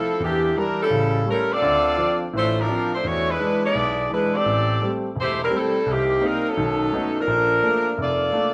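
A large studio's wet reverb, lingering about 1.1 seconds, surrounds this short swinging jazz passage, lifted from a longer piece and running 8.5 seconds at 170 BPM in 4/4 with a 65% swing on the eighth notes. A tight saxophone section carries the melody up front, its tone warm with a soft attack, vibrato and a smooth top as it moves between Eb3 and D5. Beneath it, a concert grand piano supplies the accompaniment, natural in character and also close up, reaching down to E1 for a deep bass and up to Eb4. The harmony travels through Em7b5, A7 and Dm7, then later passes Cm7 and B9 before landing on Bbmaj7 near 7.3 seconds. The mood is brassy and swinging, with both parts playing together from the first moment to the last.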